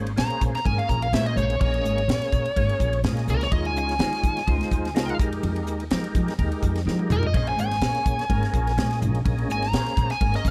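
Electric jazz fusion at 126 BPM in Bb dorian, this nocturnal, slick excerpt swings lightly on the sixteenths as a biting, overdriven picked lead guitar solos up front from 0.2 seconds over chords moving from Bbm9 through Eb9sus4 and Fm11 and back. A growly, woody pizzicato upright bass and a crisp fusion kit with a high-tuned snare and a tight kick drive the groove, with a drum fill at 6.9 seconds. Underneath, a thick, gritty tonewheel organ with percussion, chorus vibrato and slow rotary speaker sits low in a dark, dry production.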